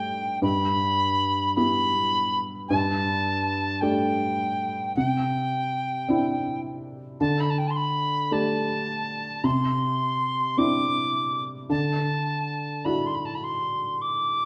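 An airy metal tin whistle carries the melody with vibrato and a breathy chiff on its tongued notes, sitting up front in this wistful, tender Celtic slow air at a rubato 53 BPM in 4/4. Beneath it, a felt-muted upright piano plays soft, mellow accompaniment with short sustain and audible action noise, moving through open, suspended harmonies from Em/G to Dadd9. A moderate recital hall reverb surrounds both parts for the full 14.5 seconds of this fragment of a longer piece.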